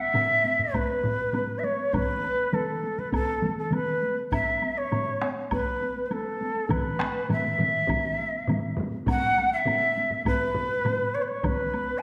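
Powerful and driving, this Japanese traditional piece for taiko drum ensemble moves at 101 BPM in a straight 4/4, centred on B suspended pentatonic, and is cut from a longer piece. A breathy shakuhachi carries the melody from the first moment, its end-blown bamboo tone full of chiff, vibrato and tongued attacks as it ranges from A4 to A5, sitting up front yet with a distant quality. Beneath it, several taiko parts enter within the first two seconds, the last at 1.9 s: heavy-stick drums with a small-room sound, another with a vintage, band-limited colour, and a hard-stick drum that is close and dry. A woody, dry woodblock sounds in the background throughout. The whole performance is placed in a wet recital hall reverb with a 1.4 s decay, giving the ensemble a resonant sense of space.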